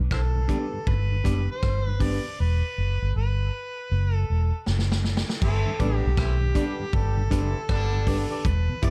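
Roots reggae in G major at a relaxed 79 BPM with a sunny mood, where a gritty, overdriven harmonica with tape echo carries the melody over a round, punchy foam-muted bass and an up-front vintage drum kit with dark cymbals that drops out at 2.4 s before a fill at 4.7 s, while a dark, clean electric guitar, a reedy electric piano stabbing with fast tremolo and a mellow tonewheel organ on slow rotary sit in the background, and a clear horn section in octaves joins on a second line at 5.4 s in this short excerpt.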